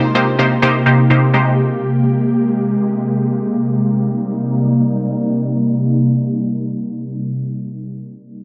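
Bittersweet yet driving, this free-time pop passage in C minor is cut from a longer piece and moves through Eb6/C and Abmaj7/C before settling on Cm7 at 3.5 seconds. A punchy, detuned sawtooth unison pluck with a fast attack, phaser and filter sweep sits bright and up front in the opening, stopping at 1.5 seconds. Alongside it, an ethereal, airy pad of wave-folded triangle and sawtooth layers, also up front, holds sustained chords with a slow attack, ensemble chorus and long release until 7.2 seconds, all within a wet plate reverb and a dense, heavily limited modern master.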